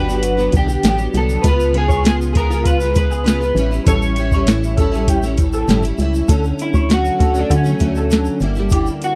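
An overdriven vintage rhythm box plays through this short, laid-back stretch of dreamy bedroom pop, its deep kick, tonal snare and metallic hi-hats heard in a dry, close 1970s-style studio sound. Beneath it, an organ-like FM bass sits forward in the mix with a hollow, percussive attack that quickly decays into a shadowy low end. A picked, plugged-in steel-string acoustic guitar carries the accompaniment with finger squeaks audible, its tone coloured by ensemble chorus and a warbly pitch drift. Two slightly broken-up electric guitars through a small old amp share the upper register: a dusky, fingered melody coloured by analog chorus and tape echo, and a quieter, compressed, picked second line with ensemble chorus and tape echo of its own. A grainy, bright tube shaker enters at 0.1 seconds and stays in the background. The harmony drifts through Gmaj7, C#7 and A7 before a new section arrives at 6.3 seconds on Dmaj7, turning to Gm6 near the end of the excerpt.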